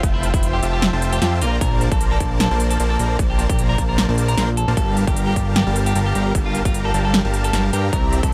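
A dense, compressed supersaw riff, huge and detuned with a touch of vibrato, pumps against the sidechain over a fat, saturated analog bass in this bright, lush future bass excerpt at 152 BPM, felt in half-time with a light 16th-note swing. A punchy, overdriven electronic kick and a layered big-room kit with crisp hats and snare drive the groove, while a twangy, slightly broken-up electric guitar enters at 0.1 s with a picked melody bathed in spring reverb and delay. The harmony moves from Fmaj9 to Bbmaj9 and then Gm9 in a dry mix.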